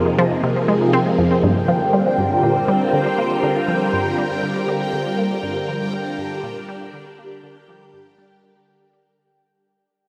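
A swirling, vintage string machine sits up front, holding slow-attack sustained chords through ensemble chorus and phaser as the harmony moves from Fm7 to Gm7 in this cosmic, hypnotic stretch of ambient, sequencer-driven space music at 120 BPM in G phrygian. Beneath it a juicy, squelchy blip pluck repeats a riff with chorus and analog delay; a filter sweep shapes the synth arpeggio sound over the opening 1.4 seconds, and a fade-out follows from there. At 1.4 seconds a quiet, bubbling stepped-filter texture enters high on a single note, detuned and resonant, all of it set in a huge, wet reverb with a 7.1-second tail.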